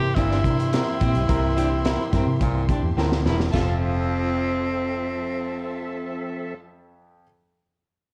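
Joyful and danceable, this short cut of uptempo 1960s-style soul puts a breathy, whispered tenor saxophone up front on the melody, over a round, foam-muted electric bass, a crunchy breakbeat kit with a high-tuned snare that plays until 3.7 seconds, a clear grand piano with audible action noise, and a quietly percussive tonewheel organ turning on a slow rotary speaker. A hollow-body electric guitar with tremolo and a raspy baritone saxophone carry riffs in the background, while a lush, distant violin section adds a second line with portamento. At 3.5 seconds, as the chord moves from C7 to Fmaj7, a roomy horn section joins after a piano fill and drum fill, all set in a dark production with a small room ambience.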